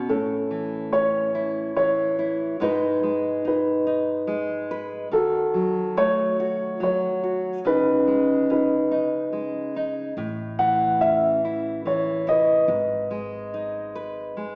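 An intimate, melancholic acoustic folk-pop ballad in 3/4 at 71 BPM, cut from a longer piece, where a dark, mellow grand piano carries the melody up front with long sustain over a full-bodied, fingerpicked nylon-string guitar whose fresh strings let a little finger squeak through. The chords move from A through G#m, D#dim and C#sus2 before returning to A and G#m, and at 10.2 seconds a woody, thumpy pizzicato upright bass on gut strings enters quietly beneath them. A wet scoring-stage reverb gives the church or concert-hall recording its spacious tail, though the overall sound has a small-speaker character.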